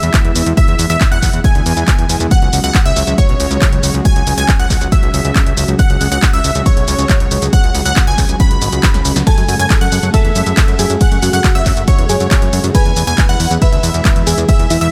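A detuned supersaw stab carries the driving, euphoric melody of this uplifting trance excerpt with phaser, tape echo and sidechain pumping, over an up-front punchy kick, a tape-warm analog drum machine of snare, claps, hi-hat, ride and shaker re-recorded in a large room, a funky tube-saturated plucky bass, a lush warbling unison pad in the background, and a very quiet bright analog pluck, with a crystalline FM bell joining at 9.3 s after a drum fill as the chords move from E through C#sus4 to F#madd9.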